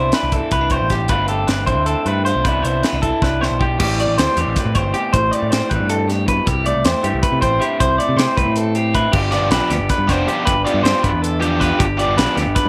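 Math rock with a midwest emo tint, this short excerpt from a longer piece feels playful and wistful, driven by a brisk, straight pulse in an odd seven-count metre. Two electric guitars run through a small old amp throughout: one plays accompaniment with a compressed, slightly broken-up bite placed up front, while the other spins high, twangy lo-fi arpeggios above it. A picked electric bass adds a growly, punchy low end, and a crisp fusion drum kit with bright cymbals, a high-tuned snare and a tight kick sits forward in an airy, polished room, playing a fill from 3.2 to 3.8 seconds before the second section begins. The harmony drifts through jazzy extended chords such as Cmaj9, G9sus4 and Am7, landing on G7 near the end. At 9.3 seconds a double-tracked, crunchy overdriven guitar joins with a warm riff, all within light reverb and small room ambience.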